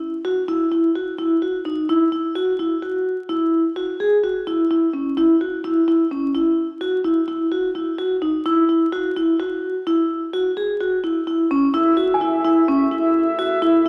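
A vibraphone played with soft mallets opens this pensive, urgent stretch of contemporary chamber music, its mellow, ringing arpeggios sitting up front with a slow motor vibrato over a rootless C#madd11 harmony in 7/4 at 128 BPM. At 11.7 seconds the harmony moves to F#m9 as a woodwind section enters with smooth, tight sustained chords in classical style, and at 12.1 seconds a small celesta adds a brief, delicate bell-like touch high above. A moderate recital hall reverb and a layer of vinyl crackle frame this short cut from a longer piece.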